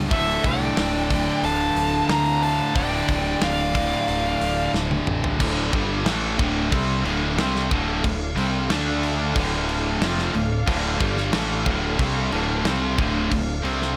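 A high-gain lead guitar, distorted and treated with tape echo, carries the melody from 0.1 to 4.7 seconds, joined by a second lead line in a lower register, the pair coloured by a mix of bright and warm tone. This is aggressive, heavy metal in D minor at 91 BPM in a straight 4/4, cut from a longer piece and built on a D minor chord. Beneath the leads, three rhythm guitars drive a riff together: a bright, double-tracked distorted guitar, a scooped high-gain guitar, and a dark, sludgy overdriven guitar, all sitting in the background. A growling fingered electric bass, overdriven and bright, anchors the low end, while a tight metal drum kit with bright cymbals, a medium-tuned snare and a clipped kick plays throughout, marking the move into the second section with a fill from 4.7 to 5.4 seconds. Behind it all, a rich symphonic string section holds smooth, bowed chords with vibrato, and the whole recording sounds blown-out and overdriven in a small room.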